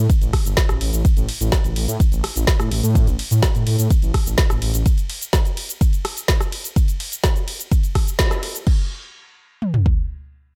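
The sound is dry and close, with little reverb, and the bass and kick sit up front in a produced mix. This progressive house passage, cut from a longer piece, moves in a straight 4/4 feel and carries an expansive, dreamy mood. It opens directly on a drop, with a dark detuned saw bass that rumbles low and saturated, its beating sawtooth layers blended with a sine body and pumped by sidechain compression until it stops at 4.8 seconds. An electronic, layered drum kit runs throughout, led by a deep kick and toms. Above it sit a woody snare, dusky hi-hats, ride and crash cymbals, rim clicks and shaker, all of which fall away at 8.8 seconds. A full-band accent lands at 8.2 seconds, just before the close of the drop, and the kick and toms then carry the final stretch on their own.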